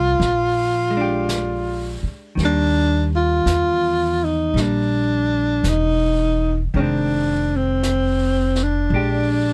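A breathy, subtone tenor saxophone sings the mellow, scooped melody up front with vibrato in this intimate, romantic jazz ballad excerpt, over a dark, clean hollow-body electric guitar, a woody pizzicato upright bass and a brush kit that enters at 0.2 seconds, all captured close and dry as the chords move from Bb6 through Ebmaj7 and Fm7.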